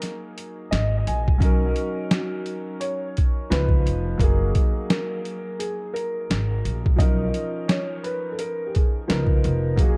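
Lo-fi hip hop with a dreamy, mellow mood, this short cut from a longer piece rides a gently swung groove in four. A felt-muted upright piano carries the melody in a soft, dark, intimate voice, its thick felt and audible action noise softened further by a low-pass filter and tape echo. Beneath it, a second upright piano plays the accompaniment with a clear, smooth, vintage tone and long sustain, coloured by cassette-tape character, filtering and echo, moving through extended chords such as Bmaj9 and C#13. An up-front boom bap sampler-style kit of kick, snare and hi-hat sounds compressed, pitched down and gritty, with a thumpy kick and a medium-tuned snare. A woody, pizzicato upright bass with steel strings enters at 0.7 seconds and drops out at 9.7 seconds, sitting forward alongside the drums. Light studio reverb and heavy echo give the mix a hazy, spacious feel.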